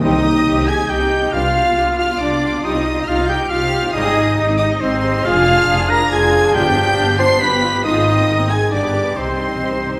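High bowed violins carry the melody with focused vibrato over oboe, hollow flute and clarinet lines, with mellow French horns and trombones holding chords, rich violas, cellos and double basses beneath, and timpani striking at 0.0, 6.5 and 9.2 seconds, in a dramatic, urgent 138 BPM orchestral movement in C minor and 3/4, cut from a longer piece and bathed in scoring-stage reverb.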